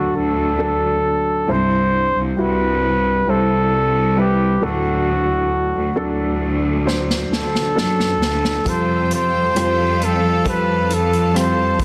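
A flugelhorn with a smooth top carries the melody up front in this longing, melancholic pop ballad, heard from the start over a dark, woody upright piano and a bright, lush cello section bowing the bass line with vibrato. At a slow 67 BPM in straight 4/4, the harmony moves from D to C and back to D. An acoustic drum kit played with bundle sticks enters at 6.9 seconds with a fill, its punchy kick, medium-tuned snare, rim click and hi-hat sounding roomy and set back. At 8.7 seconds the chord shifts to Fadd9 as a clear studio string section adds sustained chords with light vibrato and a very quiet nylon-string guitar fingerpicks arpeggios. Light reverb and small-room ambience surround the recording, which has a dense, heavily limited modern master and is cut from a longer piece.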